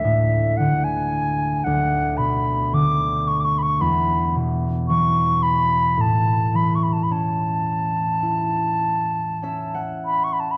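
A dark production with moderate scoring-stage reverb and lossy compression artefacts frames this nostalgic, wistful Celtic slow air, a short passage cut from a longer piece in A major, moving freely in rubato 4/4 at around 50-57 BPM. Up front, a mellow wooden flute carries the melody with an airy, straight tone, soft attack and rolled-off highs. The bright, ringing, thumb-plucked concert harp accompanies through D5, Bm/D, E5 and A chords before adding a fill from 8.8 to 10.6 seconds.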